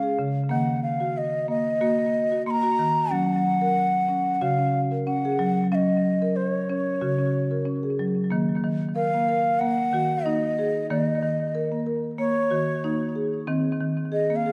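World meditative music led by tuned percussion, this hypnotic passage at 92 BPM in 4/4 sits in E-flat minor with a light sixteenth-note swing and is cut from a longer piece. A breathy, reedy bamboo bansuri carries the melody in a straight tone with a soft attack, while a woody rosewood marimba struck with medium mallets plays arpeggios beneath; both sit up front, play throughout the 14.5 seconds, and carry delay. The chords move from Db to Ebm and Gb, returning to Ebm as a new section begins at 8.3 seconds, and the dark, warm production is bathed in echo-chamber reverb with small-room ambience.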